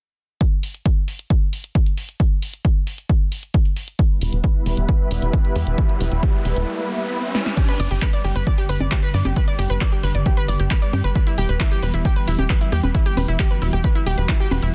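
Uplifting trance at 134 BPM in a soaring mood, opening with an overdriven, up-front electronic kick and a punchy analog drum machine of congas, crash, handclaps, hi-hat and snare, the hats, cymbals and percussion pumping with sidechain. A silky, detuned string pad with ensemble chorus and vibrato arrives at 4.0 seconds on E minor alongside a dark, tight sawtooth sequencer bass, and a riser builds into a short break and drum fill before the second section at 7.6 seconds. There a round, warbling vintage pluck arpeggio with tape echo and cassette coloring joins, while a filter sweep moves across the pad as the chords move between G and E minor under a dense, heavily limited modern master.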